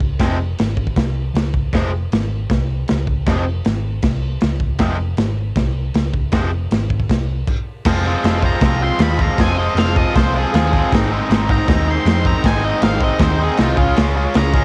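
A crunchy breakbeat drum kit sits up front in this gritty, swaggering garage rock excerpt, its tight kick, medium-tuned snare and dark cymbals saturated by cassette tape with a rolled-off top. A bright, double-tracked overdriven guitar riff joins at 0.2 seconds over a round, amped hollow-body short-scale bass. At 8.5 seconds a dark octave-fuzz lead guitar adds a distorted melody, and the harmony moves from Fm to Ab at 10.9 seconds and then to Db, all inside a small-room home recording on cassette.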